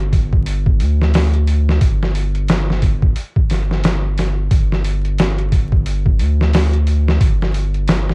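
Trip hop with a smoky, brooding mood and a swung sixteenth-note feel, cut from a longer piece, where a round, deep analog bass with a fast attack and sustained notes sits up front beside a gritty, pitched-down sampler-style drum kit of thumpy kick, medium-tuned snare and hi-hat that sounds re-recorded in a small room, all set in a dry, dark production dusted with vinyl crackle.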